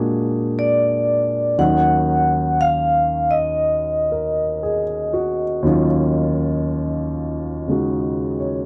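Melancholic and smoky, this short excerpt of a slow jazz ballad in Eb minor at 59 BPM swings gently in 4/4, with an intimate grand piano comping from the start, its action noise audible beneath a long sustain, while a dark, ringing vibraphone struck with medium hard mallets and a medium motor vibrato enters at 0.6 s to carry the melody over a Bbaug7 that moves to Ebm9 at 1.6 s, both instruments placed up front in a dry, close 1970s-style studio sound.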